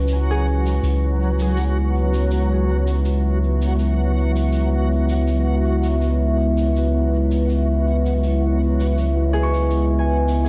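Ambient dub at 81 BPM, deep and meditative, with a warbling, nostalgic pad holding C#m9 and E/C# chords under a filter sweep, a round, up-front sub bass on C#2 with tube saturation, a reversed, granular texture, a ringing fingerpicked harp arpeggiating only at 0.0-2.6 and 9.3-10.5 seconds through low-pass filter and analog delay, and a faint cabasa with dub echo, all colored by cassette tape and vinyl crackle in a home-recorded mix.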